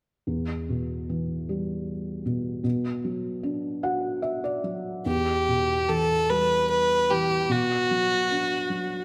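Longing and mournful, this Celtic slow air in 3/4 moves with a rubato feel, cut from a longer piece. A felt-muted upright piano opens at 0.3 seconds, its soft, muffled tone carrying the audible clack of the action and ranging from deep bass up into the treble as it moves between E minor and B minor. Near the end of the opening passage the piano plays a brief fill, and at 5.1 seconds a single bowed fiddle enters up front with a rich, smooth voice and light vibrato, singing a narrow, even melody above the piano. The fiddle sits clearly louder than the intimate piano, and both remain close and present. A moderate scoring-stage reverb gives the pair a sense of space within a dark, warm production.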